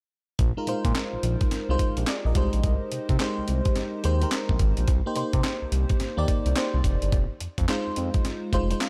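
New jack swing R&B with a slick, bouncy mood, moving at 107 BPM in 4/4 with a 16th-note swing feel, in a brief piece cut from a longer track. A sampler-style breakbeat drum kit drives it from 0.4 seconds, with a thumpy kick, high-tuned snare, hi-hat and handclaps, compressed and overdriven into a gritty, up-front punch. A smooth synth bass enters at the same moment, blending sawtooth, square and triangle tones with a touch of ring modulation for a mellow, sustained low end that ranges from F1 to C3. From 0.6 seconds an FM electric piano layered with a soft pad supplies lush, dreamy chords with a faint noise layer and chorus, decaying after each fast attack. The harmony moves through Bb7sus4, Abmaj7, Cm7 and Fm7, all set in a digital ambience that gives the mix a polished sheen.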